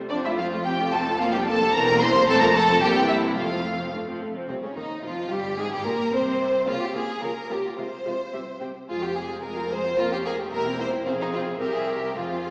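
A quick, graceful classical-period movement for string orchestra in 2/4 at 110 BPM, this cheerful fragment opens in F major and turns to F minor at 4.5 s. A smooth, warm violin section carries the melody over a focused, up-front second violin line and a rich, lush viola accompaniment. Expressive cellos and woody double basses, the latter sitting in the background, anchor the bass, all bowed with vibrato and heard from further back in a reverberant scoring stage with a small-speaker sound.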